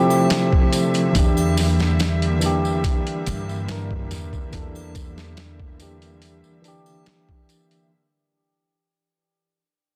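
A straight 4/4 groove at 71 BPM drives this brooding, melancholic trip hop excerpt, with a compressed, pitched-down boom bap sampler-style drum kit entering at 0.3 s, its thumpy kick, medium-tuned snare and hi-hat sitting up front. A clean tine electric piano carries the accompaniment through a combo amp, coloured by harmonic tremolo, vintage 12-bit sampler grit and tape echo, as the harmony moves from Dm11 to Em7b5. Behind it, a rich studio string section holds smooth, bowed chords with vibrato, while tambourine and triangle add close, acoustic percussion low in the mix. A woody pizzicato upright bass plays from 1.2 s to 6.4 s under a filter sweep. Light reverb and small room ambience surround a dense, heavily limited master, and the passage plays within a fade-out.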